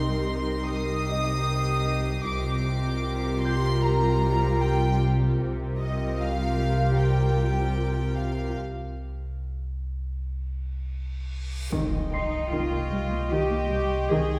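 Eerie and mysterious, this cut from a longer suspense film score moves at 76 BPM in C minor, its harmony shifting from Ebadd9/C to C7sus4 and settling on Cm at 11.7 seconds. A floating violin section carries the melody high above, bowed sul tasto with a soft attack, while a darker second violin line sits beneath it and a lush viola section adds woody, vibrato-tinged accompaniment. Cellos and double basses hold the low end, the basses sounding distant in the background on a low C alongside a clean, deep sine sub bass drone. A boxy grand piano with long sustain glints quietly in the high register as texture, and a faint upper violin layer drifts in at the start, drops out at 5.0 seconds and returns at 11.7. A break opens at 8.6 seconds, and a huge, dark reverse cymbal rises from 11.3 seconds into the impact, all set back in a spacious scoring-stage reverb.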